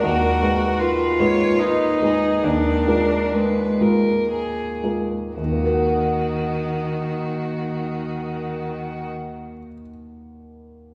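Violin, cello and grand piano begin together in this elegiac fragment from a slow romantic movement for piano quartet, set in Eb minor in 3/4 with a rubato feel at roughly 53-79 BPM and tuned to A4 = 441 Hz. The bowed violin carries the melody with a rich, focused vibrato tone that sits at a distance. Beneath it the cello sings a smooth, even second line with its own vibrato, while the piano offers a present, clear-toned accompaniment over the Abm/Eb and Bb7/Eb harmonies as the tempo slows through the opening 5.4 seconds. A contrasting passage then arrives on Ebm, and the strings stop at 9.1 seconds, leaving the piano to sound alone until 10.9 seconds. A wet concert-hall reverb places the ensemble further back in the room, lending the melancholic music a spacious, mournful glow.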